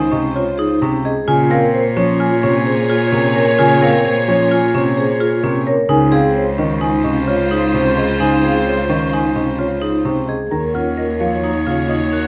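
Set in a moderate large studio reverb, this short cut from a longer piece of minimalist classical pattern music has a meditative, hypnotic pull in an even, straight 5/4. The vibraphone sits most forward, its metallic, ringing arpeggios carrying a fast motor vibrato, while a woody rosewood marimba played with medium mallets spins the melody above. A bright clarinet with a soft attack traces a narrow second line, and a lush symphonic violin section holds rich, bowed chords with vibrato underneath. A single clear cello anchors the bass with smooth, even bowing, and a concert grand piano adds intimate, vintage-toned accompaniment with audible action noise, entering at 0.1 s and stopping at 12.0 s. The harmony moves between Dbmaj7 and Bbm7 before shifting to Ebm7 at 10.5 s, where a new section begins.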